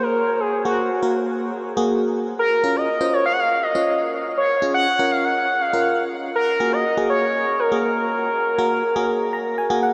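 Soaked in a huge ambient reverb with a long, dreamy tail, this short pop excerpt feels both driving and melancholic at 121 BPM in a straight 4/4, tuned slightly low to A4 = 439 Hz. An FM electric piano carries the accompaniment throughout, its glassy, bell-like attack edged with a noise layer and decaying notes colored by chorus and phaser. Up front beside it, an expressive synth lead sings the melody from Gb4 to Gb5, a smooth sawtooth tone with sustained notes, vibrato, chorus and delay. The harmony moves from Gbadd9 to Bbm at 2.6 seconds and back to Gbadd9 at 6.6 seconds. The electric piano closes the passage with a brief fill starting at 9.1 seconds.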